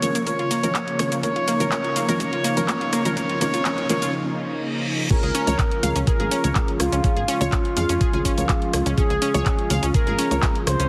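Euphoric and uplifting, this progressive house excerpt at 124 BPM in Db major opens with a smooth, expressive sawtooth lead singing over a mellow detuned pad, round chorused analog plucks tracing arpeggios, and soft, boxy stabs from a felt-muted upright piano whose action noise is audible, all breathing with sidechain pumping as a knocking, up-front electronic kick and a house kit of bright hats, handclaps, rim clicks and shaker drive the build-up. A very quiet riser and reverse cymbal run from 1.4 to 5.1 seconds, leading through a brief break into the drop at 5.1 seconds, just after which a punchy, funky analog bass with tube saturation arrives under the shift from Bbm/Db to Db. The mix sits in light reverb with a heavily compressed, radio-like sheen.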